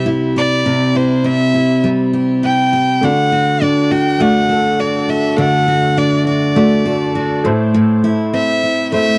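Pop with an easy-going, sunny mood, this short excerpt moves at a moderate, straight-feeling pace in four. A bowed solo violin carries the melody from the start, its rich, focused tone with vibrato and a slightly boxy character sitting up front and touched by tape echo. Beneath it, a picked steel-string acoustic guitar provides the accompaniment, bright and full-bodied with the depth of a dreadnought, and it is the most prominent part in the balance. At 3.0 seconds a woody upright piano joins the accompaniment, present yet polished and set lower in the blend. The harmony moves from C to D and settles on A minor at 7.4 seconds, and the sound is dry and close, in the manner of a 1970s studio recording with little reverb.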